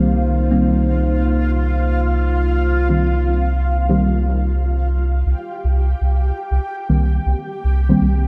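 A hazy, deep dub techno excerpt soaked in a huge ambient reverb opens on a dreamy mix in C minor at 120 BPM in straight 4/4, resting on a single Cm7 chord. A round, soft sub bass sits up front on a low C, fast in attack and sustained, while a dark analog pad of detuned square and sawtooth tones with a sub octave holds moody chords through a chorus until 5.2 seconds. Over it, a mellow chord stab built from detuned triangle, sawtooth and sine tones plucks through a filter and decays into a dub echo, coloured by chorus and phaser. High above, a bubbling texture of resonant, detuned sawtooth steps through random filter moves, bathed in its own reverb and chorus. From 5.3 seconds a filter sweep moves across the stab, carrying the piece to its cut at 8.3 seconds.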